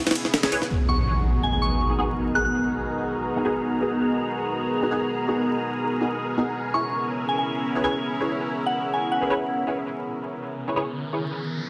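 A lush, detuned unison pad holds sustained chords up front through this nostalgic, raw drum and bass and jungle fragment, its bright sawtooth tone roughened by vintage 12-bit sampler grit, chorus and phaser. A brief burst of gritty, pitched-up sampler drums with a high-tuned snare and ride cymbal opens the clip before an impact lands at 0.7 seconds, while a muted, filtered dub chord stab with echo and an airy, wind-like noise texture carry on underneath. A soft, pure FM bell plays the melody in two short passages, and a riser closes the cut over a dense, heavily limited master with plate reverb and vinyl crackle.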